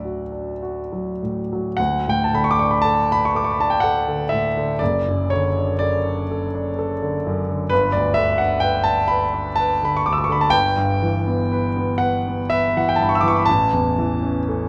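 A concert grand piano carries this short romantic nocturne alone, its tone intimate and polished, with deep bass, long sustain and the faint sound of its action audible up close. The mood is dreamy and serene, moving in a slow, rubato 3/4 that drifts between 50 and 66 BPM in D major. The piano sits up front yet is bathed in a lush recital-hall reverb that lets each chord linger in the air. After a brief opening phrase, a new section begins at 1.8 seconds, and the harmony passes from D through D/F# and G before arriving on A at 13.5 seconds. Cut from a longer piece, the passage ends there, still poised on that chord.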